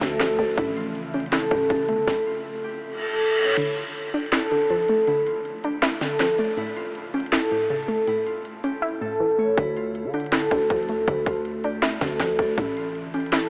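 Half-time trap hip hop in a melancholic, dark mood, this excerpt is led by an up-front fingerpicked concert harp melody that rings over a warbling, detuned, lo-fi pluck, while an ethereal glassy FM pad glows in the background only at the opening; a growling, buzzy 808-style bass drops out at 2.1 s and returns at 9.6 s, a reverse cymbal rises into the second section at 3.0 s, and crisp hats, a sharp snare, handclaps, a crash and a hard-clipped kick drive the trap kit, which sets the kick aside through much of that section, a stretch that also holds a brief silent gap, all inside a dreamy mix steeped in huge ambient reverb, vinyl crackle and an AM-radio tone.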